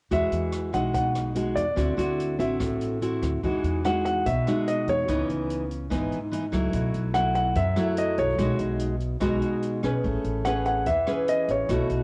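A relaxed, breezy bossa nova in E major at 145 BPM opens with piano, nylon-string guitar, upright bass and a jazz drum kit together, in a short passage cut from a longer piece. The baby grand carries the melody in a narrow upper range, intimate and up front, with audible action noise and a cassette-tape coloring. Beside it, the fingerpicked nylon-string guitar supplies the accompaniment with fresh strings, a classical tone and audible finger squeak, while the woody, thumpy pizzicato upright bass on steel strings sits lower in the mix. The open kit plays softly with hi-hat, rim click and a boomy kick in natural small-room ambience, also tape-tinged. The harmony moves from Emaj9 to D9, then a new section at 3.4 seconds runs through C#m9, B7sus4 and B69 before arriving on Amaj9, the home cassette recording bathed in moderate spring reverb.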